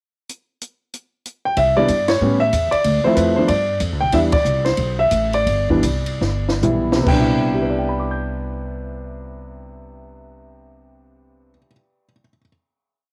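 Sophisticated and relaxed, this short jazz piano trio piece in C major swings in 4/4 at 131-188 BPM. It opens at 0.3 seconds with a pickup from a dry, compact cocktail drum kit with a high-tuned snare, tight kick and stick ride pattern, before an up-front baby grand piano enters with warm, motif-based phrases and syncopated rootless comping over a woody pizzicato upright bass walking on steel strings. The band hits accents and slows from 4.1 seconds through a drum fill, then settles on a final chord that the piano holds to 12.5 seconds, all captured as a home cassette recording in moderate studio reverb.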